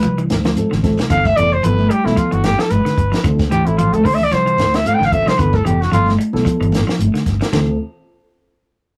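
A rough rehearsal-room recording with tube saturation and a wet booth ambience carries this driving, hypnotic afrobeat excerpt at 112 BPM in D dorian over Dm7 and G9. A warm, punchy trumpet with light vibrato solos up front, while a clean, picked electric guitar plays arpeggios and a round, dark fingered electric bass holds the low end. A reedy electric piano with spring reverb joins at 0.6 seconds, and a compact cocktail drum kit with dark cymbals, a high-tuned snare and a tight kick sits beside congas with a thick skin in the background and a grainy, very quiet shekere.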